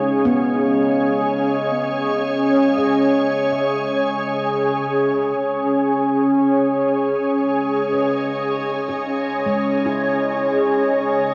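From the first moment, a soft, organ-like pad holds a sustained C sharp minor chord up front. Its pure, calm tone is detuned and gently evolving, thickened by ensemble chorus and its own reverb. Beneath it in the background, a resonant drone of sawtooth and sine tones sustains low notes with moving overtones and a ring-modulated edge. A ringing handpan of nitrided steel plays meditative arpeggios with sharp finger strokes, colored by analog delay. It fades out over the first 5.4 seconds, then fades back in until the cut at 11.3 seconds. The ambient piece feels spacious and reflective, with a short, wet booth ambience and the character of a home cassette recording.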